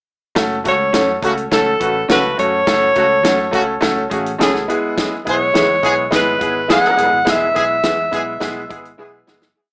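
Heard through a small speaker in a moderate club reverb, this joyful, uptempo 1960s-style soul piece rides a pre-chorus groove. A brilliant, woody upright piano plays close-voiced eighth-note chords up front, a natural country drum kit drives a soul beat with a punchy kick and the snare on all four beats, and a dark, foam-muted electric bass adds a syncopated, melodic line with slides. A breathy alto saxophone carries the motif-based melody in a vintage jazz-style subtone with scooped notes, while a distant, roomy horn section with analog delay plays tight short stabs in octaves, and an electric guitar through a small old amp adds quiet, slightly broken-up chops on the backbeat before the music fades from 7.3 seconds and a drum fill arrives at 9.0 seconds.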